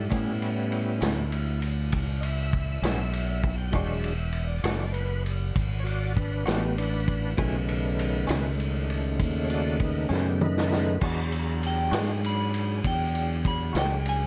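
A dark, lightly reverberant production frames this rollicking, swaggering slow blues in 12/8 at 66 BPM, cut from a longer piece and moving through A9, E9 and B9 chords in E mixolydian. A gritty, thick overdriven tonewheel organ, turning through a slow rotary speaker with chorus vibrato, takes the lead with sustained chords until 11.0 seconds, over an up-front fingered electric bass, a scooped, twangy clean electric guitar with tremolo, and a vintage drum kit with a tight kick and dark cymbals that plays a fill from 10.1 seconds. At 11.7 seconds a slightly broken-up electric guitar, also with tremolo, enters with a high picked melody.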